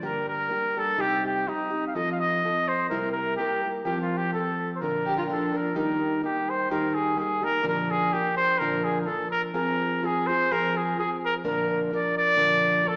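A warm, vintage-toned solo trumpet carries a classical-style melody up front over a fresh-stringed, fingerpicked nylon-string guitar in this romantic, festive mariachi passage at 126 BPM in 2/4, which moves from Bb major to Eb major at 5.8 s, while a dark, woody bowed violin with vibrato slips in briefly at 5.1 s, and the wet recital-hall reverb comes through with a small-speaker sound.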